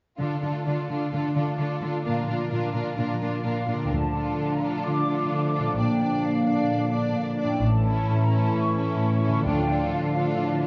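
Adventurous and swashbuckling, this heroic film-score excerpt opens with lush, vibrato-rich violins carrying the melody over a second violin line, smooth violas, ringing background harp arpeggios and dark, woody cellos, before airy, hollow flutes enter at 3.4 s and tight French horns, mellow trombones and bowed double basses join at 3.9 s, all set in the glow of a recital-hall reverb.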